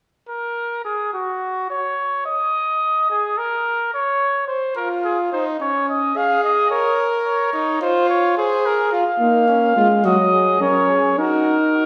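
Classical brass canzona in Bb minor at 107 BPM, contemplative yet driving, cut from a longer piece and set in a reverberant recital hall. A vintage-toned trumpet carries the melody from 0.3 seconds, joined at 4.8 seconds by a close-miked second trumpet with light vibrato, and at 9.2 seconds a mellow trombone with a soft attack and smooth top enters beneath them as accompaniment. The harmony moves through Db, Bbm, Fm, Gb and Ebm.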